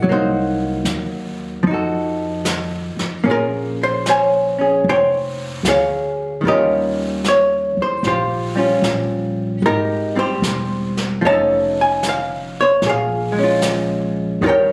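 Romantic and late-night, this swung jazz ballad at 75 BPM is cut from a longer piece. A dark, clean, hollow-body archtop guitar sits up front, picking compressed chords through a progression that moves from Cm7b5 and F7b9 to Bbm9, Eb9 and Abmaj7. A woody, thumpy pizzicato upright bass and a natural-sounding brushed kit with a medium-tuned snare and hi-hat sit further back. The whole performance has the roomy feel of a phone recording made in the room, with club reverb, a moderate reverb tail and compression.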